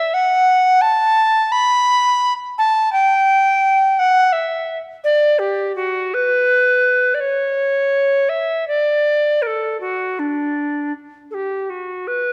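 A lone tenor recorder opens this excerpt from a longer baroque-style classical fantasia, its wooden, pure straight tone carrying a soft attack with a gentle chiff. The unaccompanied line moves with a free, rubato feel that is at once dance-like and serene, spanning its lower notes through its higher register. A moderate recital-hall reverb surrounds the instrument, which sits up front in the sound.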